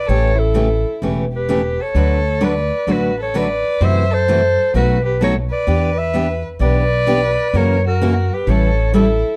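Acoustic string swing in the jazz manouche style, charming and playful at 129 BPM, where a breathy clarinet with vibrato and scooped notes leads the melody through plate reverb, a rich bowed violin carries a smooth second line, a picked steel-string acoustic guitar with audible finger squeak supplies the accompaniment, and a woody pizzicato upright bass sits up front, all in a dark, warm production over changes moving from A7 through D6, F#m7b5, B7, Em7 and F#7 back to A7.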